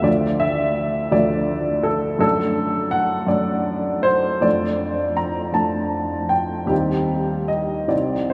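An upright piano carries this short romantic character piece alone, its warm, woody, slightly detuned tone sitting up front with the clatter of its action clearly audible. The mood is bittersweet and passionate. The pulse moves slowly at 54 BPM in 6/8, with uneven beats and free rubato. Over about 8.3 seconds, cut from a longer piece, the harmony moves from D minor to D/F#, back to D minor over F, and then to C minor over Eb, spanning the keyboard from low C2 up to Bb5. The piano's natural, intimate character sits inside a wet, cathedral-like reverb whose long tail suggests a vast, echoing space.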